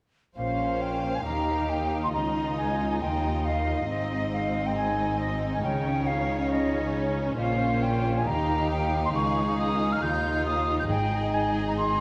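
A straight 4/4 pulse at 137 BPM drives this swashbuckling, adventurous cinematic excerpt in which a focused, lush symphonic violin section carries the melody from 0.4 to 12.0 seconds while an airy, up-front silver concert flute and a background studio violin section add second lines, a smooth viola section accompanies, a bright, ringing, very quiet harp plays thumb-plucked arpeggios, and rich cello and double bass sections hold the bass, all moving through Bbmadd9, Ebadd9, Dbadd9 and Ab chords in a moderate concert hall reverb.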